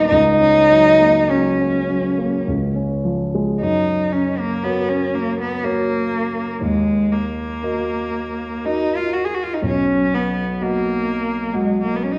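Classical romantic duo in a serene, tender 3/4 with a flexible rubato feel, where a rich, smooth bowed cello carries the vibrato-laden melody up front over a dark, mellow grand piano accompaniment, the pair heard in a resonant recital hall through a worn cassette tape whose warbly pitch drift gives this short fragment of a longer piece a fragile, aged glow.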